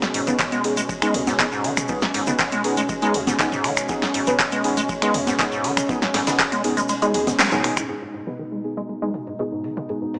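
A gritty, driving acid house excerpt opens with a punchy, overdriven analog drum machine of congas, finger snaps, handclaps, hi-hat, snare and toms, alongside a squelchy, resonant square-wave acid bass riff with tube saturation and delay, and a smooth, warbling vintage pad holding sustained chords, the bass and pad both pumping under sidechain. Dark, phased chord stabs with delay join them. Further back sit a compressed, pitched-up breakbeat kit of ride cymbal and high-tuned snare in a large reverberant room, a grainy tube shaker, a round sine sub bass, and a deep, roomy electronic kick. The kick drops out at 6.9 seconds, a drum fill and band accent hit at 7.4 seconds, and from 7.9 seconds filter sweeps move over the drums and acid bass, the whole heard through a dry, small-speaker hardware sound touched by lush hall reverb.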